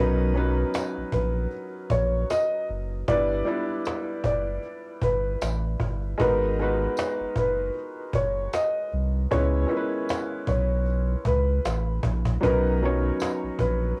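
Cosy and nostalgic, this lo-fi hip hop excerpt in B major moves at 77 BPM with a gentle 16th-note swing, as a dark, woody upright piano carries the melody through cassette tape, plate reverb and tape echo over a felt-muted upright piano's soft, intimate chords, a deep, round sub bass sitting up front, a snappy cajon struck with hard hands entering at 0.3 seconds, and a faint, jingly, saturated tambourine, all moving through Bmaj9, G6, G#m9 and C#m7 before returning to Bmaj9 in a homely cassette recording.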